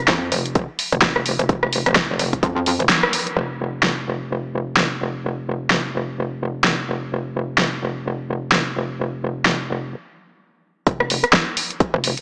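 A metallic, distorted wobble bass with chorus, tube saturation and sidechain pumping opens this bouncy, aggressive 128 BPM bass house excerpt in swung 4/4, joined almost at once by an overdriven big-room drum kit of hi-hat, rim click and huge snare and by a punchy, up-front electronic kick that drops out at 2.5 seconds and returns only when the drop hits at 10.9 seconds after a brief stop, heard through a plate reverb with a small-speaker sound.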